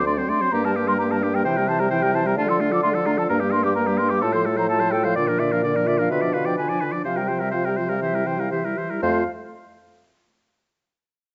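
Graceful and cheerful, this quick classical-period movement for wind quintet, cut from a longer piece, sets a pure, expressive concert flute melody with vibrato over a bright oboe second line, a dark clarinet sitting in the background, a distant French horn with a soft attack and a warm bassoon bass placed up front, all in a moderate recital-hall reverb, as the harmony passes through minor and seventh chords to land on F at 9.0 seconds, just before the quintet falls silent around 9.2 to 9.3 seconds.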